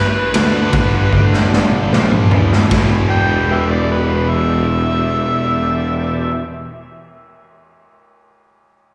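A straight 4/4 groove drives this smoky, gritty blues rock with a southern rock edge, cut from a longer piece and heard as a live gig through the venue's PA, with small-room ambience and recital-hall reverb. An overdriven harmonica carries the melody with tongue slaps, scooped notes and light vibrato through slapback echo and analog delay, while a bright, double-tracked distorted guitar plays a riff, a mellow, up-front tuba with vibrato holds the bass, and a very quiet, thick tonewheel organ with a slow rotary speaker sustains chords. A raw, saturated garage drum kit with a boomy kick, ride cymbal, snare and toms plays a fill from 1.1 s and stops at 2.9 s, just after the harmony moves from Em to Em7.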